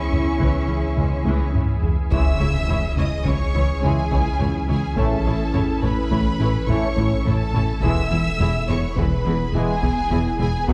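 Set in a straight 5/4 at 105 BPM, this relentless, futuristic cue in C# minor pairs a hybrid orchestral and electronic film score with a very quiet, compressed and saturated taiko ensemble, a smooth sawtooth synth bass riff entering at 0.1 seconds, a deep pure sine sub bass, a woody double bass section and a distant cello section, moving from C#m to A at 5.0 seconds and E at 7.8 seconds. A lush, vibrato-rich studio violin section carries the high melody over a second violin line, a background viola section, a mellow French horn section, bright trombones from 1.0 seconds and a warbling, vintage organ-like drone with ensemble chorus, while a soft, round filtered pluck traces arpeggios. A drum fill leads into an electronic impact, all within a dark production on a moderate scoring stage reverb.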